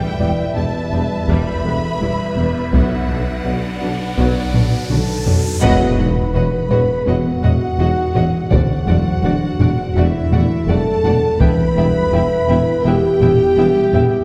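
Heard from further back in a wet scoring stage, this brooding, futuristic hybrid orchestral and electronic film cue moves at 83 BPM in E minor and is cut from a longer piece. Lush, vibrato-rich violins carry the melody over a second violin line and distant violas, while mellow French horns hold tight sustained chords and a harp-like synth pluck with chorus rings out dark arpeggios. Clear cellos, a roomy tuba and double basses anchor the bass, a boxy, worn grand piano adds faint texture, close and dry taiko drums enter at 1.3 s, and an electronic riser from 2.0 s builds beneath a drum fill starting at 4.5 s into an impact at 5.6 s.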